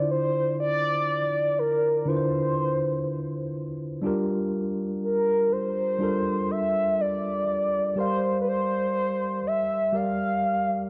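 A horn-like synth lead carries the melody up front, its round, sawtooth-based tone shaped by a filter sweep, a soft attack and sustained notes with vibrato, and colored by chorus, phaser, cassette tape and analog delay. Beneath it, a mellow tine electric piano plays the accompaniment, clean and direct, sitting close with a tape-worn character of its own. This late-night, moody R&B piece moves at a slow 61 BPM in 4/4 with a light swing on the sixteenths, set in D minor and tuned slightly under standard pitch. The harmony moves from Dm9 to Gm9 at 4.0 seconds and settles on C7sus4/G at 8.0 seconds. A moderate spring reverb surrounds the pair, and the home cassette recording rolls off the top end for a dusky, intimate sound across this brief cut from a longer piece.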